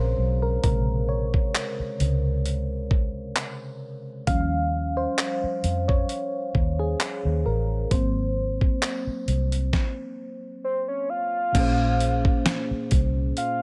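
A dry, close-sounding excerpt of slow contemporary R&B in Bb minor at 66 BPM, with a lightly swung 16th feel and a late-night, longing mood. A mellow, warbling FM electric piano with chorus carries the chords from Bbm7 through Eb9 and Ab7 and takes a solo over a round, foam-muted fingered bass and a gritty, compressed sampler-style kit of thumpy kick, fat snare, hi-hat, handclaps and crash, with a stop at 9.7 s. At 10.6 s a soft, octave-layered synth lead with vibrato, chorus and digital delay enters in a high register, and the harmony settles on Bbm9 at 11.5 s.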